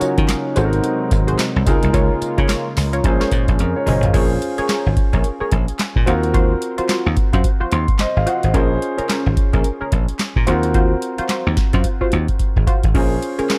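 New jack swing R&B at 109 BPM in Eb dorian, this punchy, bouncy excerpt rides a booming analog drum machine with a deep kick, crisp snare, metallic hats, handclaps, tambourine and toms, alongside an up-front, bright slap bass, a dark, sawtooth-edged polysynth with chorus playing funky stabs, a concert grand piano comping with a fill at 7.4 seconds, and a smooth, detuned analog pad that stops at 4.1 seconds, all in a dry, dark mix over Ebm7, Ab7 and Bbm7 chords.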